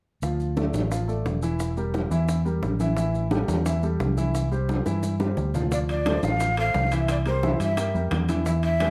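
Passionate and danceable, this brisk salsa cut from a longer piece moves at 175 BPM in D minor, with a woody, up-front upright piano providing accompaniment alongside a dark, round fingered electric bass while distant ringing congas, dry low-tuned bongos and grainy maracas fill out the percussion. After a drum fill from 4.9 seconds, a breathy, mellow metal jazz flute with vibrato and a crisp chiff takes the melody at 5.7 seconds, and ringing metal-shell timbales join at 5.9 seconds. Light reverb gives the ensemble a touch of space.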